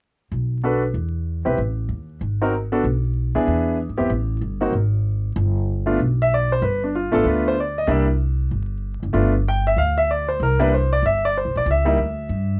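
A clear, natural grand piano sits up front carrying the melody in this relaxed, warm jazz piano trio excerpt, swinging at a brisk 190 BPM in G mixolydian. Just before it, at 0.3 seconds, a woody, dark upright bass with steel strings enters, plucked and close. The harmony moves from Bm7 and E7 into a new passage at 5.4 seconds built on G9, C and C9, all heard through light reverb and a worn cassette sheen with vinyl crackle and warbling pitch drift.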